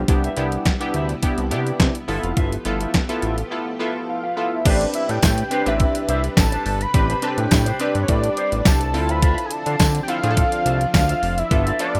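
A detuned 8-bit drum machine drives a straight 4/4 at 105 BPM with a thumpy kick, snare, hi-hat, handclaps and crash up front, while a fat, detuned sawtooth bass, a punchy, wave-folded polysynth comp, a twangy envelope-filtered guitar and a lush, vintage string machine set a funky, late-night early-eighties boogie funk groove in A minor over Cmaj7, G13, Am11 and Dm9, with a break at 3.5 seconds, a mellow, vibrato-laden analog lead entering at 4.1 seconds, and a jingly tambourine at 5.2 seconds, all in a rough home demo mix of this excerpt from a longer piece.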